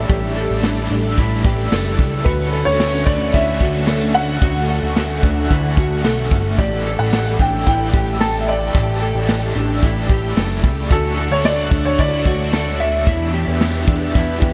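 A vintage drum kit, its punchy kick and snare up front with hi-hat and tambourine, enters at 0.1 s and drives this melancholic, hazy dream pop excerpt at 111 BPM in a straight 4/4, sitting over a fat, saturated analog bass. A soft, felt-muted upright piano carries an intimate melody through analog chorus and tape echo, while a dark, clean electric guitar plays fingered arpeggios with lush chorus, a bright, overdriven garage guitar adds picked accompaniment through tremolo, and a swirling string machine holds phased, slow-attack chords. The harmony moves between A7sus4 and Dmaj7 before landing on Em7 at 13.1 s, and a huge ambient reverb soaks the mix in a dreamy haze.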